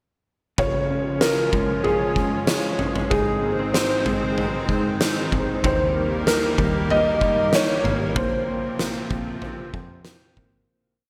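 A blissful, dreamy dream pop piece in Db lydian at 95 BPM opens at 0.6 s with a soft, boxy felt-muted upright piano tracing a free melody, its action noise audible. Beneath it sit a thick, detuned unison pad, a dark electric guitar rolling fingerpicked arpeggios through chorus and slapback echo, and a gritty, saturated, oversized low-tuned drum kit up front with a punchy kick and fat snare, its toms and kick moving in a slow pulse. A round, foam-muted bass slides in at 5.6 s as the chords move from Db through Ab and Eb to Bbsus2, all bathed in a lush hall reverb with a big arena sound before fading out from 8.2 s to 10.7 s.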